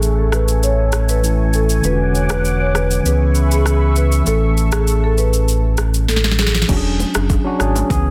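A clean tine electric piano, a thick, warbling vintage unison pad with chorus and a full sine sub bass up front open this romantic, joyful afrobeats excerpt over a produced electronic afro-pop kit with a deep kick and sharp snare, as a woody, mellow soft-mallet marimba carries the melody from 0.2 s through a filter sweep and a drum fill, before the pad drops away at 6.7 s and bright, band-limited congas and bongos join in the background, all set in digital ambience with a dense, heavily limited modern master.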